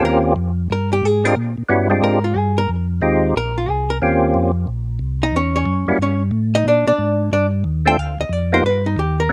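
Greasy and bluesy, this soul jazz organ trio excerpt swings at 181 BPM in 4/4, with a fat, percussive tonewheel organ carrying the melody through slow rotary speaker, chorus vibrato, key click and slapback echo. A dark, compressed hollow-body archtop guitar, picked clean and amplified with its own slapback echo, takes a solo across the full 9.3 seconds over changes such as Eb13, Bb13 and Fm7. Underneath, a mellow, round second tonewheel organ plays the bass line, lightly overdriven with chorus vibrato and slow rotary, all close and up front in a dry outdoor sound.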